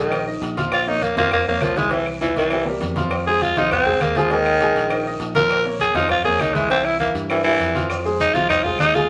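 Driving salsa rhythm from warm, low-tuned congas, round cowbell and bongos, woody claves and a raspy guiro carries a fiery, growling tenor saxophone solo up front, breathy and gritty with light vibrato, over a clear, boxy baby grand piano and a dark, round fingered electric bass, with a drum fill at 2.2 seconds, grainy maracas slipping in at 7.9 seconds, and a wet studio reverb around this short cut from a longer piece.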